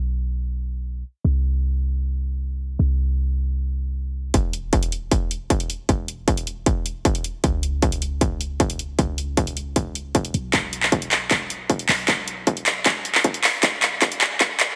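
A half-time 4/4 pulse at 155 BPM drives this lush, playful future bass excerpt, tuned slightly sharp to A4 = 441 Hz. It opens with the deep, boomy 808-style bass alone, a mellow sine tone with a noise layer and a fast attack that decays, pumping from sidechain compression as it moves between E1 and C#2. At 4.3 seconds a dubstep drum kit of handclaps and bright hi-hats arrives together with a layered electronic kick whose distortion gives it a gritty edge beneath its tape warmth. Both drum parts sit up front beside the bass as the passage turns into a build-up, with filter sweeps shaping the opening and the build. A drum fill starts at 10.5 seconds and carries through to the cut, all set in a light reverb.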